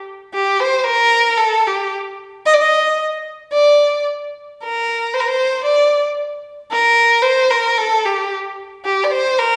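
A straight 4/4 pulse at 113 BPM underlies this soulful, longing Arabic passage, cut from a longer piece. A single bowed violin plays solo from 0.3 s to 9.6 s, ranging from G4 to Eb5 with expressive vibrato and gliding portamento, its warm tone set up front. The wet recital hall reverb places the listener further back in the room, lending the line a distant glow as the same section is heard twice.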